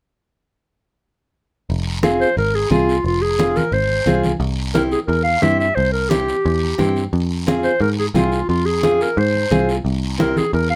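Cumbia in a danceable, driving mood, this excerpt is cut from a longer piece and rides a straight four-beat feel over a short progression moving from Fm to C, back to Fm and onto C7. A dark, round picked electric bass with a foam-muted tone sits up front from 1.7 s, joined at the same moment by a raspy guiro heard close and dry. Low-tuned congas with a thick, damped skin arrive at 2.0 s, sitting in the background with a live-room feel, while a bright nylon-string guitar with fresh strings fingerpicks a small, up-front accompaniment. From 2.2 s a clear clarinet takes the solo melody in a classical style, its soft attack placed at the front of the mix. Light reverb gives the whole a gentle sense of space.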